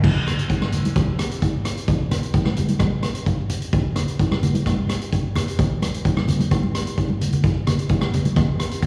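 Heard as a live gig through the venue's PA, this short calypso excerpt carries light reverb and a small-room ambience. A street-band drum kit sits up front at 130 BPM in a straight 4/4, its boomy kick, hi-hat, rim click and dark crash cymbals sounding mid-forward with a rolled-off top, and it breaks into a fill at 7.1 seconds. Thick-skinned, medium-tuned congas played with soft hands join at 0.3 seconds behind a slapback echo, lending the festive, sunny groove a warm pulse.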